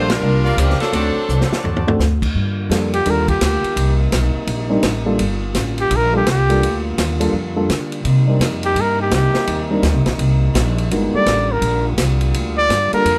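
A band accent opens this dramatic, brassy big band swing piece, with an edgy saxophone section carrying the melody over clear trumpet-section stabs, a dark grand piano, growly pizzicato upright bass and a vintage drum kit with dark cymbals; after a drum fill the saxes and trumpet section fall away by 2.0 seconds, and a trombone section sustains chords in the background while a warm solo trumpet with vibrato and scooped notes takes the lead from 2.9 seconds, all in a close, detailed and nearly reverb-free sound.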